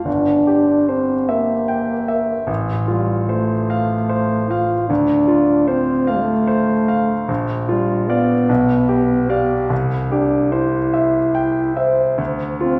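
Romantic classical music for French horn and grand piano, serene in mood, moves in a rubato 6/8 at 50 BPM in dotted quarters, tuned to A4 = 439 Hz. A mellow horn with vibrato sings the solo melody up front over a bright, brilliant concert grand whose deep bass and polished, present tone carry the accompaniment from 0.0 to 12.8 seconds, all heard from further back in a wet recital hall with a 1.6-second reverb.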